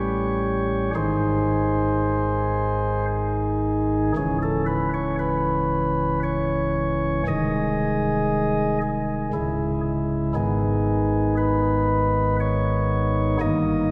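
Soft chamber organ flute stops with audible chiff open this solemn, dark classical chorale in C# minor, a fragment cut from a longer piece, moving in a rubato 3/4 around 58 BPM as the solo organ sits up front yet is heard from further back within a wet church reverb, turning to a new passage at 4.2 seconds that moves through C#m, G#/B# and G#m before closing on D#/G at 13.4 seconds.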